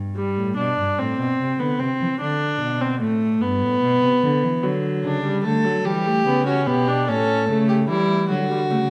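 A reedy viola with gut-string tone and light vibrato sits up front from 0.2 seconds, carrying the accompaniment through this joyful, stately fragment of a baroque-style fugue for string quartet, cut from a longer piece. Beneath it, a dark cello holds the bass from the very start, its period-style bowing giving a smooth top to the low register. At 5.0 seconds a single violin enters with a second line, bowed in the same historical manner and carrying a warm glow. In a straight 6/8, the harmony moves from G through A minor and E minor to an A7 that arrives on D. A wet recital hall reverb and a dusky production surround the three players.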